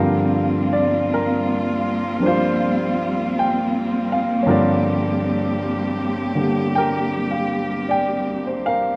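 Jazz ballad in G minor, moving at a slow 53 BPM in 4/4 with a swung eighth-note feel, wistful and melancholic throughout this nine-second cut from a longer piece. A concert grand piano with deep bass and a natural, up-front sound plays accompaniment across the full span over a Gm7 chord, while a close, bowed cello section adds sustained chords with rich, expressive vibrato. Light reverb and a dark, warm production frame the two parts.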